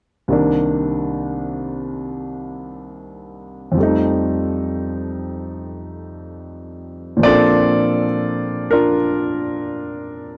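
In free time, this romantic, intimate jazz ballad in Bb major is carried by a solo grand piano, warm and up front, spanning C2 to D5 from 0.3 to 10.4 seconds. The harmony moves from Cm7 to F7 before settling on Bbmaj9 at 7.2 seconds, where a new section begins. The sound is dry and close, like a 1970s studio recording, and the passage is cut from a longer piece.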